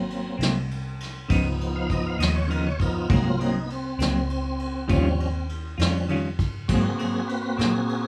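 A slow blues at 67 BPM rolls along in a straight 12/8, settled in Ab mixolydian with a laid-back, soulful mood. A vintage brush kit with a punchy kick, medium-tuned snare and dark cymbals sits up front, its rolled-off top keeping the groove soft, while a foam-muted fingered electric bass supplies a round, dark low end. The tonewheel organ carries the lead with full, lightly overdriven sustained chords, colored by a slow rotary speaker and chorus vibrato. A clean, picked electric guitar with tremolo enters at 0.4 seconds to add accompaniment. The harmony moves from Ab9 to Db9, back to a rootless Ab9, then to Eb9 before returning to Ab9 at 6.7 seconds, all captured in a rough home demo mix with small room ambience and light reverb in this short cut from a longer piece.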